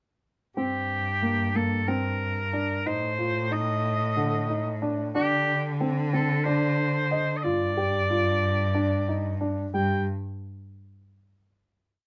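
A clear oboe, dark, mellow grand piano and rich bowed cello enter together at 0.6 seconds in this short, complete chamber piece in G minor, set in an urgent yet pensive 7/8 at 183 BPM counted in eighths. The classical-style oboe carries a solo, motif-based melody in sentence-like phrases with vibrato, while the piano turns over an ostinato of arpeggios and the cello, expressive and up front, holds sustained bass notes with vibrato, a soft attack and portamento. The harmony moves from Gmadd11 through Adim and D7sus4 to G5 before the parts stop at 10.0 seconds, leaving a final note to ring until 12.0 seconds in light reverb, captured by close, detailed microphones.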